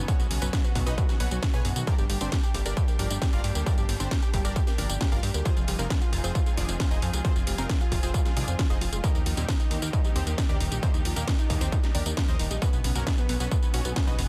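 This soaring, uplifting trance excerpt opens with its full harmonic bed at once. A punchy, detuned supersaw stab carries the melody, while a lush string section holds sustained chords in the background, a round analog pluck runs arpeggios, and a fat sawtooth bass sits underneath. At 0.1 seconds a distorted, overdriven electronic kick arrives up front, joined by a techno kit whose cracking snare, hi-hat and tambourine carry their own overdrive. The stab, strings, pluck and bass all pump with sidechain compression, with dub echo trailing the stab and pluck, and chorus colouring the pluck's noise-layered, filter-swept tone. The bright, bowed strings bear a vintage 12-bit sampler grit, and the bass gains heft from wave-folding and a filter sweep, while the harmony moves through Bsus2, Gm, Fm7 and Eb6 before returning to Bsus2 within digital ambience and a dense, heavily limited modern master.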